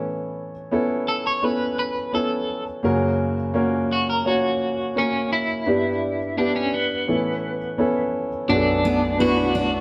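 Pop in B minor at 85 BPM, driving and dramatic, this short excerpt opens on an intimate concert grand piano with audible action noise and deep bass, joined at 1.1 s by an up-front, slightly broken-up electric guitar melody with tremolo, before lush bowed strings in the background arrive at 8.5 s as the chords settle on Bm7, followed at 8.8 s by a full-bodied picked dreadnought riff, all played live in a stone room with moderate reverb.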